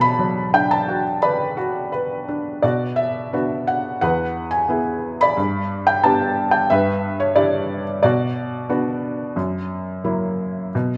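A felt-muted upright piano opens alone and carries the whole passage, its soft, intimate tone sitting up front with a short sustain and a vintage character. The playing is lyrical and classical in feel, moving with a gentle rubato through a cool, bittersweet progression that settles back on Bm at 8.0 seconds before closing on F#7. A moderate reverb from a scoring stage surrounds the piano, and this brief fragment ends at 11.0 seconds, clearly lifted from a longer piece.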